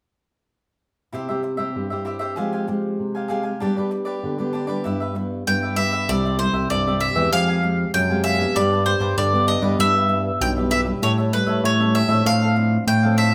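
Recorded live in one room with a wet large-studio reverb, this sunny, lively samba excerpt opens at 1.1 s with crisp, picked cavaquinho and a dark, up-front fingerpicked nylon-string guitar with audible finger squeak, before a bright, woody mandolin with double strings takes the melody at 5.5 s and a fat, sawtooth-and-square analog bass with a fast attack arrives up front at 6.1 s.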